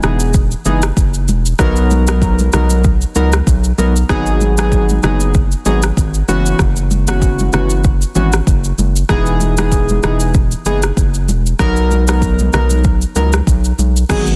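Afrobeats at 96 BPM with a sultry, mellow swing, this short cut from a longer piece sets chorused, detuned analog keys over a round, dark square-wave bass and an up-front electronic kit with a deep kick, rim click, shaker, crash and a softly clipped snare, while quiet, damped congas sit close and dry, chords move from Emaj7 through Bmaj7, G#m7 and F#7sus4, a breathy pad touches in only at 14.2 seconds, and the dense, heavily limited mix carries little reverb.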